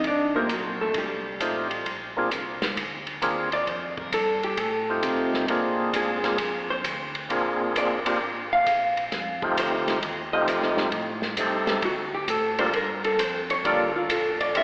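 Swinging and soulful, this short organ-trio cut features a dark, compressed hollow-body jazz guitar soloing up front throughout, while a percussive tonewheel organ with key click and slow rotary speaker carries the melody from 0.3 seconds, a round, mellow organ with chorus vibrato holds down the bass, and a tight, up-front soul drum kit with dark cymbals drives the groove over F9 and Bb9 changes, all bathed in a wet church reverb and an AM-radio tone.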